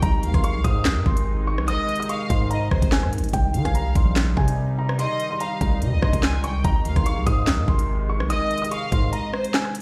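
A cold, ominous half-time drill beat at 145 BPM opens at once with a knocking, up-front electronic kit of sharp snare, crisp hats, handclaps and rim clicks, a heavy, aggressive distorted 808-style bass, a dark, mellow grand piano melody with audible action noise and delay, and a detuned, wave-folded pad holding chorused chords over Ab and C minor, while a lush, vibrato-rich violin section adds a second line from 0.2 seconds and the bass drops out at 9.1 seconds for a brief break, the mix sitting in a stony, bare-room reverb in this short cut from a longer piece.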